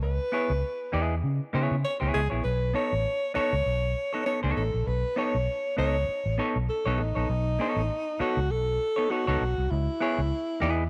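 A breathy alto saxophone carries the melody in a close-miked, whispered subtone, its soft attacks, scooped notes and vibrato giving this short funk cut a sly, hypnotic pull. Beneath it, a foam-muted vintage bass sits round and punchy, while a clean semi-hollow electric guitar adds dark, hollow-bodied accompaniment from 0.3 seconds. The swung groove rests on a long B9 before returning to C#m7, with a light studio reverb around the parts.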